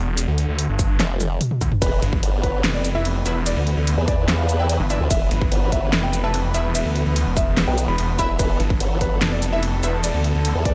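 A snarling, distorted saw bass opens this short cut from a heavy, aggressive wobble dubstep track, growling up front with a moving notch filter over a half-time feel. The big-room dance drum kit follows almost at once, its huge snare joined by handclaps, hi-hat, ride cymbal, shaker and toms. A punchy, overdriven electronic kick enters at 0.8 seconds, and a brief drum fill follows at 1.2 seconds. A second bass, a detuned formant-sweep wobble with chorus, enters at 1.0 seconds and sits just as far forward, adding a pulsing, vowel-like lurch. From 1.8 seconds a dark, mellow grand piano carries the melody in the background through tape echo, while a veiled, con sordino string section holds bowed chords that pump beneath the low end. Bold, layered synth stabs in the manner of an orchestra hit punctuate the mix from 2.9 seconds, their detuned sawtooth and noise layers decaying into built-in reverb and echo. 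The overall sound is dry, dense and loud.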